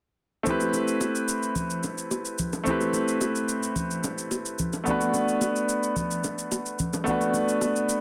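A straight 4/4 amapiano groove moves at 109 BPM, carried by an electronic, overdriven shaker that runs from 0.5 to 8.0 seconds alongside ringing, close-miked congas and bongos. The mood is deep and late-night, set in A dorian with a tuning of A4 = 441 Hz. A clear baby grand piano enters at 0.4 seconds as accompaniment, sitting up front between A3 and B4 and bathed in plate reverb. Its harmony moves from Am9 to Bm7 at 4.9 seconds. The percussion sits in a moderate studio room with a short tail, and the whole is a dense, heavily limited modern master. This is a brief cut from a longer piece.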